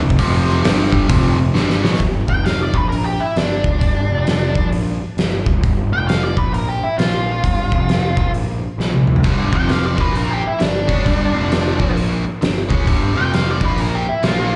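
A swung eighth-note shuffle in 4/4 drives this raunchy blues rock and southern rock excerpt, cut from a longer piece and captured live through a club PA with the room's ambience and a moderate reverb. An oversized, low-tuned acoustic drum kit sits loudest and up front, with a boomy kick, fat snare, gritty dark cymbals, hi-hat and toms, plus short fills just before each guitar change. A growly fuzz bass, picked and overdriven, holds down the bottom from start to finish. A biting, double-tracked overdriven guitar opens on a riff with spring reverb and slapback echo, stops at 2.0 seconds, and returns at 9.2 seconds to take up the riff again. In the gap between those two stretches, an octave-fuzz lead guitar enters at 2.3 seconds with a dusky, distorted melody set in plate reverb and slapback echo, staying up front through the close as the gig sound keeps the top end dull and roomy.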